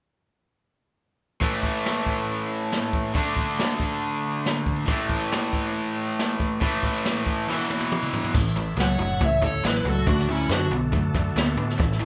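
A gritty, driving blues rock and southern rock cut played live in one room with light reverb, opening on a bright, double-tracked cranked stack guitar riff over a jazz brush drum kit whose boomy kick and rolled-off top sit up front despite a roomy, distant character. A drum fill leads at 8.3 s into a fuller passage where a round, foam-muted vintage electric bass joins alongside a thick overdriven tonewheel organ with slow rotary speaker sitting in the background. At 8.8 s two dark, picked overdriven lead guitars enter briefly, one carrying the melody and the other a second line beneath it.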